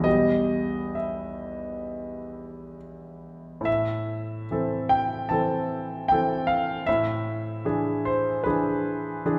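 Rubato phrasing over a pulse of 64-76 BPM in 4/4 gives this romantic classical character piece for solo piano a brooding, stormy air, moving from E minor into A minor at 3.7 s and touching an E7/A chord at 6.9 s. The grand piano sounds clear, intimate and up front, spanning E2 to A5 with its action noise audible. A wet reverb in a church or concert hall space surrounds this brief passage cut from a longer work.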